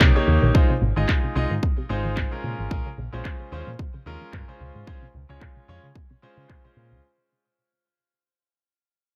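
A groovy, feel-good nu-disco cut, taken from a longer piece, moving at 111 BPM in 4/4 with a swung sixteenth feel over chords of Eb7, Ab6, Bbm7 and Dbmaj7. A punchy, overdriven electronic kick sits up front with layered electronic handclaps, both re-recorded in a small room, while a dark, round picked electric bass with an envelope filter carries the low end and a brilliant grand piano with audible action noise and long sustain plays accompaniment through tape echo and sidechain pumping. In the background, a lush, detuned sawtooth unison pluck with a fast attack and short decay runs arpeggios through flanger and tape echo, as a filter sweep moves across the drums and the arpeggio sound and the whole passage fades out over its 7.0 seconds in a digital ambience.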